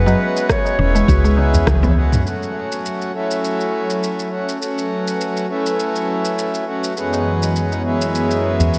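A short cut from a longer organic downtempo piece opens on a brief, airy cedar flute phrase with analog delay, over reedy, breathing harmonium with 12-bit sampler grit, a detuned mallet-like synth pluck playing arpeggios, a round woody FM bass up front and a barely audible bronze singing bowl. An overdriven deep house kit of rim click, shaker and toms, high-tuned ringing tabla and a deep electronic kick join almost at once, and after a drum fill a smooth, dark sawtooth pad arrives at 2.3 s with sidechain pumping, while the tabla returns at 7.1 s. The hypnotic mood sits in a moderate echo chamber reverb, with the harmonium's dub echo feeding an echo-heavy mix.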